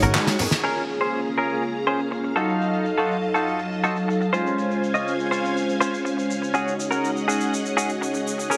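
Sleek and cosmic, this nu-disco excerpt in Bb minor moves at 122 BPM in a straight 4/4. It opens with a drum fill and band accent, joined by tambourine and congas that drop out at 0.6 s. A damped, dry 70s kit with a fat snare, handclaps, shaker and rolled-off hats settles under a twangy, compressed clean electric guitar riff with analog chorus and tape echo. Above it sit brassy detuned synth brass chords with vibrato and echo, and lush, slow-attack string machine pads, the brass and strings pumping gently through Bbm7, F7b9, Dbmaj7 and Ab7sus4 in a small, lightly reverberant room.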